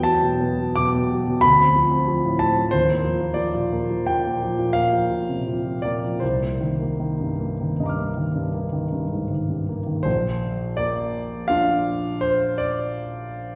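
A warm, intimate, natural concert grand piano carries this luminous, dreamy impressionist solo piece in Bb major, moving in a rubato 5/4 at roughly 75-95 BPM across a range from deep bass up to high upper notes, with its action noise audible up front. Lush harmonies drift through Em9, Dm7, Ebmaj9 and Cm11 before the music settles onto a Bbadd9 at 10.1 seconds. A wet recital-hall reverb with a 1.4-second decay surrounds this short excerpt of a longer work, recorded in a church or concert hall.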